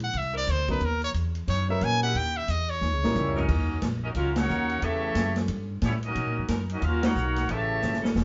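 Big band swing jazz, cut from a longer piece, swinging and dramatic: a brilliant, forceful solo trumpet with scooped notes leads over woody pizzicato upright bass, a drum kit with a punchy kick and crash, ride and hi-hat, a smooth saxophone section holding background chords and a long-sustaining grand piano, before the solo gives way at 3.2 seconds to a tight, vintage trumpet section carrying the melody against a bright trombone section's second line, with drum fills closing each half and band accents at 4.3 and 7.0 seconds.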